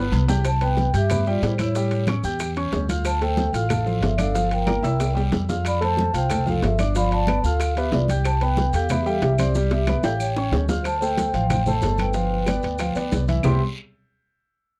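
A straight 4/4 Afro-Cuban jazz groove at 185 BPM drives this lively, sophisticated passage in C major, built on ringing agogo bells and timbales, bright congas, tight high-tuned cowbell and bongos, raspy guiro, grainy maracas and distant woody claves, with drum fills around 4.7 and 9.5 seconds. A dark, thumpy pizzicato upright bass sits up front beside a warm concert grand piano's accompaniment, while a soft-mallet vibraphone with its motor off carries the melody and a hollow concert flute with vibrato plays a pure second line in the background. The close, dry 1970s-style studio sound has light reverb, and the harmony moves through Cmaj7, A7b13, Dm7 and G7 before the fragment is cut off.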